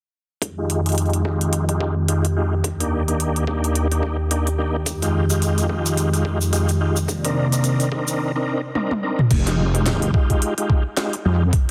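This swaggering, playful glitch hop excerpt in F dorian opens at 0.4 s with a smooth, detuned analog pad holding lush sustained chords over a thumpy, pitched-down electronic kick and a layered drum kit of cracking snare, crisp hats, toms and crash, all at 108 BPM with a 58% swing on the sixteenths. Moments later a gritty tonewheel organ punches out percussive stabs through a fast rotary speaker, chorus vibrato, low-pass filter and delay, with a filter sweep running across it through the first section; both organ and pad pump against the sidechain. Partway through, a grainy, bright tube shaker adds small-room texture as the chords move from Fm9 through Ebmaj7 to Cm9, and a drum fill leads into the next section. At 9.3 s a heavy, resonant sawtooth wobble bass drops in with tube saturation as the harmony returns to Fm9. The mix carries light reverb and a heavily compressed, radio-like sound.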